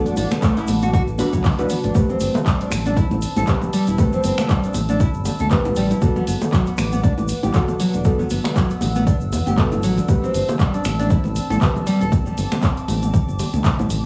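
A driving, warm afro house excerpt opens on a moody, detuned analog pad, bright fingerpicked nylon-string guitar arpeggios and soft, decaying chord stabs, all three pumping with sidechain and colored by cassette tape, with tape echo on the guitar and stabs and chorus on the pad and stabs. A round analog bass of sine and sawtooth pumps underneath, while a punchy, up-front electronic kick anchors a dark-hatted deep house kit of finger snaps, handclaps, hi-hat and toms; hard-handed congas and low-tuned bongos sit in the background of a small, lightly reverberant room, and a grainy egg shaker sounds close and dry. The guitar and stabs stop at 12.1 seconds, leaving the pad, bass, drums and percussion to carry the swung groove toward the end at 14.1 seconds over chords moving from Bm7 through Am7 and Gmaj7 back to Am7.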